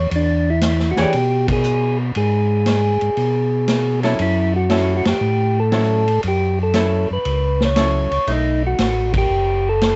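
This excerpt of bluesy, greasy soul jazz organ trio opens on two up-front tonewheel organs, one carrying the melody with a percussive, clean edge through a slow rotary speaker while the other plays a round, lightly overdriven bass line with chorus vibrato, joined a moment later by a vintage drum kit with dark cymbals, a punchy kick and a medium-tuned snare. At 1.0 s a dark, hollow-body archtop guitar comes in with clean picked accompaniment, and the band hits accents at 1.4, 5.0 and 9.0 seconds over a swung pulse moving from E through F#m7 to B7. Light reverb and the worn, warbling pitch drift of old cassette tape give the sound a muffled, rolled-off top.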